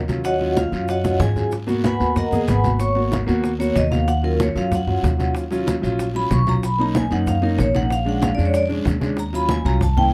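A bright, ringing vibraphone leads this fiery, sophisticated Afro-Cuban jazz excerpt, soloing from 0.2 s with medium hard mallets, a medium motor vibrato and a plate reverb that keeps its metallic tone up front. At 188 BPM in a straight 4/4 in Eb minor, a woody pizzicato upright bass on steel strings anchors the low end, while a vintage concert grand piano adds intimate, smooth accompaniment with deep bass and audible action noise. Thick-skinned, low-tuned congas sit in the background, joined by round, very quiet bongos struck with hard hands, a raspy, saturated guiro and grainy, mellow maracas. The harmony moves from Ebm7 through Abm9, Bmaj7 and Bb7#9 before returning to Ebm7 at 9.2 s. A moderate club reverb and a dark, warm production shape the ten-second cut from a longer piece.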